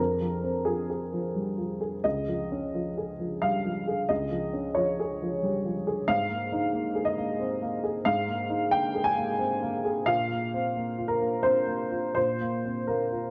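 A worn, woody upright piano, slightly detuned and close up front, plays alone through this short fragment of a longer neoclassical minimalist piece, moving in three with uneven, rubato beats. Its intimate, wistful harmony drifts from F minor through Dbadd9 and Absus2 to Bbsus2, set in a moderate concert-hall reverb. The production is dark and warm.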